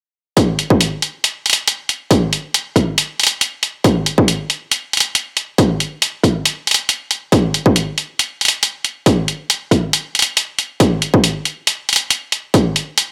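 A half-time deep dubstep groove at 138 BPM with a 16th-note swing sets a heavy, dark mood in this short piece cut from a longer track, where an up-front, punchy electronic kick drum, re-recorded in a large room and high-pass filtered, runs from 0.4 to 12.6 seconds alongside a layered electronic hi-hat that continues to 13.1 seconds, all in a dry mix with little reverb.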